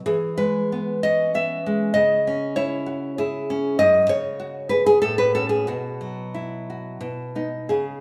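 Warm and nostalgic, this short excerpt from a longer romantic piece for solo classical guitar moves in 3/4 with a rubato feel, drifting between 87 and 102 BPM in E major. The fingerpicked nylon-string guitar sits up front with a bright acoustic tone, ranging from F#2 to E5 as it passes from E through C#m and F#m/A to a Bsus4 that settles on B at 7.0 seconds. A lush recital hall reverb with a 1.6-second decay surrounds the instrument.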